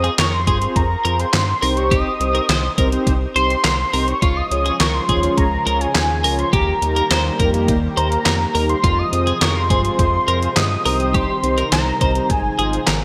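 A detuned 8-bit drum machine sets a straight 4/4 pulse at 104 BPM, its thumpy kick, fat snare, hi-hat and handclaps sitting up front with gated reverb and a tape-warmed, sampler-style tone. This wistful yet bright synth-pop excerpt is cut from a longer piece. A fat, detuned analog lead carries the high melody with vibrato, chorus, shimmer reverb and digital delay. A clean, compressed twelve-string electric guitar plays a picked second line through lush chorus and the same echoing shimmer. Mellow, brassy synth chords with a darkened filter sweep fill the middle, over a round, deep analog bass that grounds the Fm, Cm, Db and Eb progression. At 4.2 seconds a retro pulse-width pad fades in softly behind everything else, and the whole mix is bathed in a moderate hall reverb with a glossy 1980s-style digital sheen.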